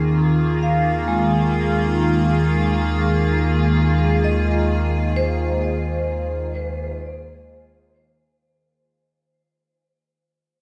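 Luminous and peaceful, this brief ambient excerpt at 66 BPM in 3/4, tuned to A4 = 439 Hz, rests on a single Ebsus24 chord as an up-front, morphing wavetable pad with chorus and phaser holds sustained harmony, a bright, ringing vibraphone with medium hard mallets and slow motor vibrato spins airy arpeggios through a diffuse delay, and a deep, rumbling, detuned drone anchors the low end on Eb2, all bathed in a huge 8.0-second reverb with a dreamy cassette-tape haze before fading out from 4.7 seconds.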